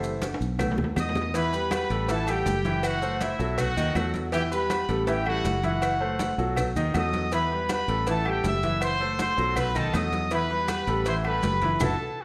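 A punchy, tight trumpet section with a smooth top carries the melody from 1.0 s in this passionate, danceable salsa excerpt in E minor at 160 BPM, over a clear grand piano that takes a brief solo spot under a drum fill, a dark, foam-muted fingered electric bass, ringing congas, grainy maracas, round low-tuned cowbell and bongos, metal-shell timbales and agogo bells, and woody claves, set in a large studio reverb and closing on a band accent at 11.8 s.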